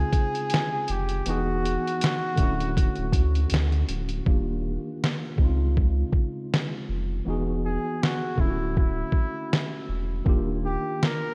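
A veiled, bucket-muted trumpet with vibrato plays a distant, roomy jazz-style solo through tape echo over a worn, slightly out-of-tune tine electric piano playing major-ninth chords, a deep, saturated sub bass, and a muffled, pitched-down sampler-style drum kit with a thumpy kick and fat snare whose hi-hats fall silent at 4.3 s, in this cosy, nostalgic, swung lo-fi hip hop excerpt.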